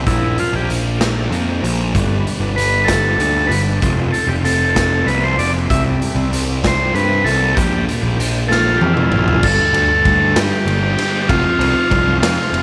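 Lightly reverberant small-room sound frames this hypnotic, kaleidoscopic psychedelic rock passage at 64 BPM in 6/8, cycling through Bbadd9, G, F and C. A buzzy vintage combo organ carries the melody through tape echo as a solo until 9.4 s, over an up-front fuzz bass that is round and overdriven, a dark double-tracked fuzz guitar riff with phaser sitting in the background, and a very quiet, fat tonewheel organ holding sustained chords with key click and rotary speaker. The raw, gritty garage drum kit has a boomy kick and a pumping stone-room sound, and it plays a fill from 8.5 s that leads into the closing section.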